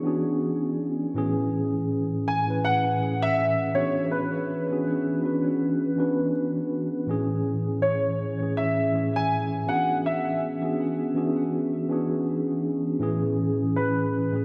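R&B with a tender, dreamy mood, this short excerpt from a longer piece moves at an unhurried pace with a gentle sixteenth-note swing. A grand piano with a warm tone carries the melody in a high, narrow range, colored by analog chorus and tape echo. Beneath it, a mellow tine electric piano plays the accompaniment across a lower span, its clean sound heard through its built-in speakers. Both keyboards sit up front and play throughout the full 14.4 seconds, while the harmony sways back and forth between E13 and Amaj7. A lush hall reverb soaks the whole mix, giving it a soft, floating atmosphere.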